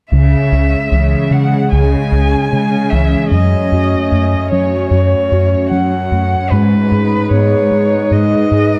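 A brooding, futuristic cinematic cue in C# minor at 75 BPM opens at 0.1 s with everything together: a rubbery, hollow square bass riff at the bottom, a clear symphonic cello section bowing the bass line with light vibrato, and a warbling, lo-fi tape-like pad holding detuned chords with chorus. Over them, a distant solo violin sings an expressive melody with vibrato and portamento, while a soft, harp-like synth pluck rings out arpeggios in the background. The chords move from C#m to F#m at 3.3 s and G#m at 6.5 s, all set in a reverberant recital hall, before this excerpt from a longer piece breaks off at 8.8 s.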